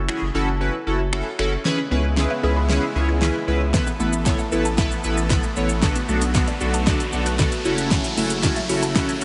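Bittersweet and energetic, this dance-pop excerpt in F# minor moves at 115 BPM. A deep analog bass and a glossy chorused polysynth with phaser pump up front, while a punchy pop drum kit with fat snare, metallic hats, finger snaps and shaker drives the straight 4/4 groove. At 1.7 s a build-up begins with a drum fill and filter sweep as a detuned supersaw pad enters in the background alongside a very quiet, woody mallet-like synth pluck playing arpeggios, an electronic riser joins at 4.0 s, and the chords move from F#m7 through C#m7, Asus2 and Bm7 back to F#m7, set in a lush hall reverb that gives a big arena sound.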